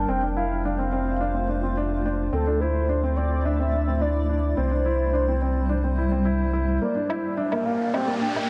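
A velvety, detuned synth lead with chorus and digital delay carries the melody over a cloudy, evolving granular pad, a woody upright piano riff echoed by delay and a deep, round analog bass, in this cinematic, intimate piano and strings electronica piece in G dorian at 107 BPM; the bass drops out at 6.8 s as a build-up begins, an overdriven electronic woodblock enters at 7.1 s and a riser joins at 7.3 s, the whole excerpt set in a huge ambient reverb with a dark, warm production.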